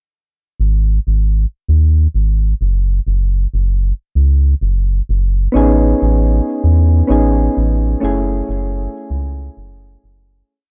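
A straight 4/4 groove carries this smooth sunset chillout piece: a round, deep analog bass plays a dotted rhythm up front from 0.6 seconds, and at 5.5 seconds soft, warbling electric-piano-like synth keys with chorus and tape echo join with held rootless chords and syncopated pushes, set in a dry, gritty hardware recording with digital ambience before a fade-out begins at 7.2 seconds.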